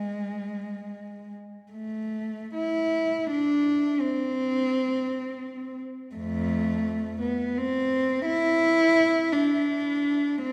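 Mournful and lonely, this brief classical excerpt from a longer piece features a single warm cello playing solo in free time, its close, intimate sound marked by light vibrato, soft attacks and an airy sul tasto bow tone, ranging from F2 to E4 and held up front within a wet church reverb that lingers for 3.5 seconds.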